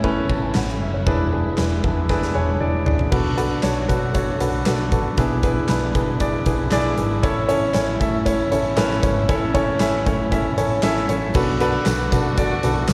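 Piano-driven pop at 117 BPM in A major, uplifting and hopeful, where an up-front baby grand with short sustain and slapback echo carries the accompaniment over a round, punchy picked electric bass, a huge arena drum kit with bright cymbals, handclaps and a drum fill from 2.1 to 3.1 seconds, and distant, lush bowed strings with vibrato and portamento, while a jingly tambourine joins in the background at 11.3 seconds, all heard as a live gig through the venue's PA with recital hall reverb.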